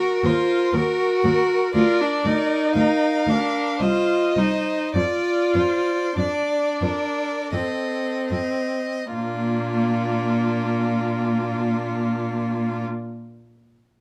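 An up-front viola carries a smooth, even accompaniment with vibrato in this tender excerpt from a slow romantic string quartet movement in Bb major and 3/4, played with rubato at 36-63 BPM and slowing from 0.2 to 9.1 seconds. Above it, the first violin sings a focused melody while the second violin adds a more distant, expressive line with portamento, and the cello, entering at 0.2 seconds, grounds the bass with a smooth top. Light reverb surrounds the bowed strings as the harmony moves from Ebm through Cm and a rootless F7 to settle on Bb at 9.1 seconds.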